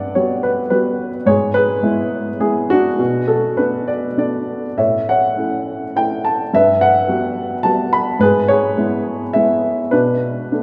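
Lyrical classical solo piano in a brooding, moody 3/4 at a rubato 98-112 BPM, this 10.6-second fragment cut from a longer piece features an intimate, woody upright piano played up front with a dark, mellow tone, short sustain and audible action noise, spanning G2 to B5 over a cycling Gmaj7, E/G#, Bm7 and A progression, all set in the wet reverb of a cathedral-like church or concert hall.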